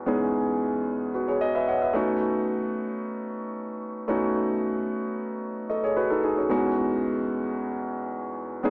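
A concert grand piano opens alone, its warm tone rich in deep bass and placed up front, voicing Emaj13 and B9 chords from E2 to F#5 through a tape echo in this soulful, relaxed amapiano fragment. A moderate plate reverb with a long tail surrounds it, while the overall sound has a small-speaker character. At 6.5 seconds a drop arrives and the piano returns to Emaj13 until the cut ends at 8.7 seconds.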